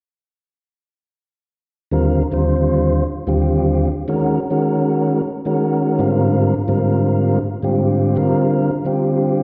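A clear, up-front tonewheel organ carries this soaring, slick jazz fragment from 1.9 to 9.4 seconds, its key click and vibrato colored by a slow rotary speaker and a slapback echo as it comps through lush major-ninth and added-ninth chords from Ebmaj9 to Bbadd9. Heard live through a venue's PA, the organ sits in a lush recital-hall reverb that gives this short cut from a longer piece a spacious, polished glow.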